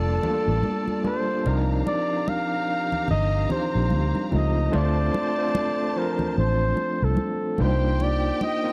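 Dry, close room sound frames this bittersweet, smooth slice of lush 1970s-style soul, where a soft-attacked flugelhorn carries the melody with scooped notes and light vibrato over a bowed string section's lush second line, a barky, overdriven electric piano with fast tremolo, a round, foam-muted fingered bass up front, and thin-skinned congas played with soft hands in the background.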